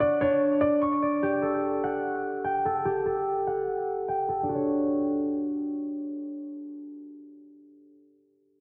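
This floating, dreamy hip hop fragment moves in a half-time feel over Dmaj7 and Gsus2 chords. A felt-muted upright piano, intimate and mellow with audible action noise, plays a brief melody that stops at 0.8 seconds, while an up-front concert harp sounds ringing, fingerpicked arpeggios through 8.0 seconds, both parts shaded by a low-pass filter and tape echo. A filter sweep runs across the opening 4.5 seconds, and light reverb and small room ambience sit inside a dense, heavily limited modern master.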